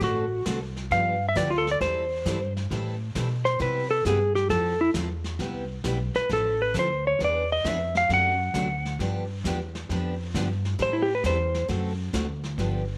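A clean, dark lap steel guitar carries the melody up front, slid and fingerpicked with a compressed, even tone, in this playful, down-home western swing excerpt at 134 BPM with a lilting swung feel. A bright, full-bodied picked acoustic guitar picks out the chords beneath it, while a woody pizzicato upright bass and a vintage brush kit with a punchy kick and rolled-off top keep the groove moving through jazzy changes from D7 and G7 to Cmaj7 and Fmaj7. Light reverb places the band in a natural studio room, and the lap steel drops out at 11.7 seconds as the others play on briefly.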